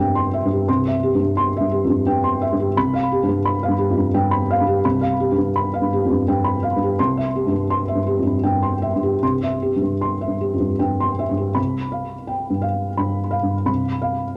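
A felt-muted upright piano plays alone, its thick felt giving a soft, dark, mellow tone with short sustain and audible action noise, heard up front through cassette tape coloring and tape echo. This tender, intimate neoclassical minimalist piece in C major moves in a rubato 3/4 at roughly 74-88 BPM, shifting between C and G7 over C across a range from C2 to C6, with a new section arriving at 11.6 seconds. The home cassette recording sits in moderate studio reverb, giving this short cut from a longer piece a vintage, close feel.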